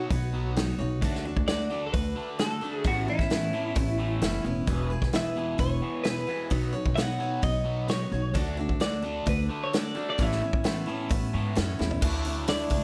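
A small, lightly reverberant room frames this open-road folk rock and heartland rock excerpt at 131 BPM, where a bright, twangy twelve-string electric guitar carries the melody over a full-bodied jumbo acoustic guitar with finger squeak, a double-tracked overdriven stack guitar riff colored by phaser, a woody, thumpy pizzicato upright bass and a punchy, up-front country drum kit entering at 0.1 seconds, moving through Badd9, D, Aadd9 and E before a drum fill at 11.8 seconds leads to a closing Dadd9.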